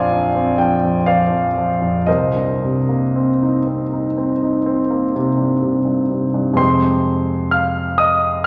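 Flowing in a rubato 9/8, this brief fragment of impressionist classical solo piano feels mysterious and wistful, its harmony drifting from Bbadd9 to Cm7 at 2.1 seconds before settling on Fmadd9 as a new section opens at 6.6 seconds. The concert grand sits up front and intimate, warm and polished, with deep bass, long sustain and audible action noise, spanning Bb1 to F6. A wet scoring-stage reverb surrounds the instrument.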